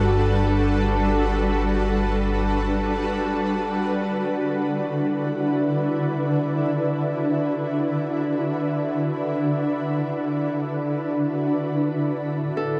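Bathed in a lush hall reverb with a dark, warm production, this luminous, peaceful ambient excerpt drifts in free time. A shimmering, detuned pad with chorus holds sustained chords throughout over a deep, ominous, rumbling drone that stops at 3.6 s, where the music settles into D major and a filter sweep begins on the pad, while a glassy, beating glass harmonica hovers in the background. At 12.6 s a bright, ringing Celtic harp arpeggio enters up front for a brief moment.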